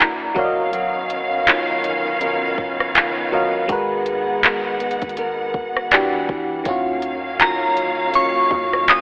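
An up-front, electronic R&B drum kit with a soft kick, crisp hi-hats, handclaps and rim clicks sets a sensual, late-night mood in this swung contemporary R&B clip cut from a longer piece. A crystalline, full-bodied synth bell carries the melody with chorus and digital delay, sounding briefly at the very start and returning from 7.4 seconds to the end. Beneath it, a vintage FM electric piano with a bell-like attack and a warbling chorus plays the accompaniment, while a dark studio string section holds lush, woody sustained chords with vibrato, bowed sul tasto. A small, fingerpicked nylon-string guitar adds arpeggios through a digital delay, finger squeaks audible, and a deep, boomy 808-style bass sits mellow in the background. The harmony drifts from Bmaj9#11 through Abm9 and Em9 to Ebm9, and the whole mix has a telephone-filtered character bathed in a moderate hall reverb.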